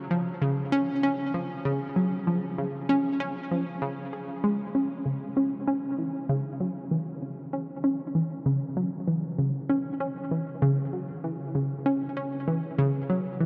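Ambient fragment at 97 BPM in 4/4 with a straight, hypnotic and expansive feel, where a lone analog pluck, round and up front with sawtooth and square-wave tones, a noise layer, a filter sweep, a fast attack and short decay, plays alone from 0.1 to 13.5 seconds between C#3 and G#4, colored by chorus and tape echo and settling into C# minor from 5.1 seconds, all inside a huge, wet reverb and a dark production.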